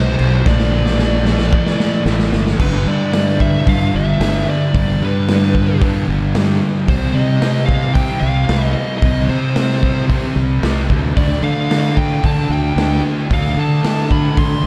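A double-tracked fuzz guitar sits up front with a dark, distorted riff thickened by lush chorus, setting a wistful, dreamy tone in this shoegaze and dream pop rock piece, cut from a longer work. Above it, a compressed fuzz lead guitar carries the melody high in its range through tape echo, its tone warm despite the distortion. A growly, punchy fingered electric bass adds overdriven bite underneath, bright and direct. The raw garage drum kit enters at 0.2 seconds with a fill from 0.5 to 2.6 seconds before carrying the 4/4 pulse with crash, hi-hat, punchy kick and medium-tuned snare, its sound gritty and saturated with a rolled-off top in a stone room. The harmony moves from Bb through G, Cm and Dm, all set in a light, small-room reverb.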